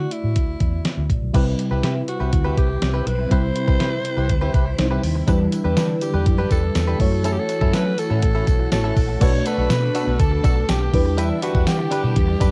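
This dramatic, urgent 1980s-style pop excerpt at 122 BPM in 4/4 opens with a raspy, gritty alto saxophone carrying a punchy melody with vibrato. Beneath it sit a mellow FM electric piano colored by chorus and phaser, a dark, foam-muted fingered electric bass, and an up-front 12-bit drum machine with a thumpy kick and fat snare. At 1.3 seconds a swirling string machine enters in the background with slow-attack sustained chords, alongside a twangy, compressed electric guitar riff recorded direct through analog chorus. A jingly, close and dry tambourine slips in quietly at 5.3 seconds, and later a shimmering, dreamy FM bell with ensemble chorus and analog delay adds a high second line. The harmony moves from Dadd9 to Cmaj7, then through Em7 and F#m7 to Bm7 and Em7, and the whole recording carries a homemade cassette character with light reverb and a dulled top end.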